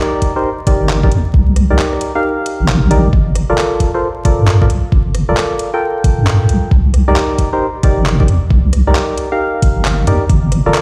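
A hollow, percussive organ stab opens this skippy, soulful two-step UK garage excerpt, its dark chorused chords trailing tape echo over Cm7 and Gm7, alongside a garage drum kit of handclaps, rim clicks and metallic hi-hats. The groove sits at 134 BPM in 4/4 with a 64% swing on the 16th notes. A knocking, layered electronic kick sits up front, and a deep, saturated wobble bass with a sine-like core and chorus arrives at 0.8 seconds, adding a dark weight beneath. The kick drops out from 2.2 to 3.1 seconds, briefly leaving the stabs, bass and lighter kit to carry the swing. The kick and kit each have a tape-warm tone and a small room reverb. The whole mix sounds as if played on a big sound system in a bare room, with a large studio reverb and a layer of vinyl crackle.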